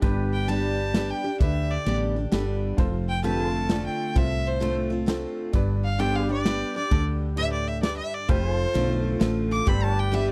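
This is honky-tonk and classic country in 3/4 at 131 BPM, swung on the eighth notes in G mixolydian, with a heartfelt, down-home mood, cut from a longer piece. A clear, focused fiddle carries the melody from 0.3 seconds, bowed by one player with light vibrato and a slightly boxy tone. Beneath it, a bright dreadnought steel-string acoustic guitar is picked with audible finger squeak, while a pedal steel guitar, clean and compressed, holds sustained chords with fingerpicks, slide and volume swells. A worn grand piano sits in the background playing accompaniment and adds a short fill at 2.1 seconds. The growly, round fretless bass is up front and punchy, and a natural country kit of kick, snare and ride gives an airy, polished pulse as the harmony moves between G and F6. The sound is dry and close, in the manner of a 1970s studio session.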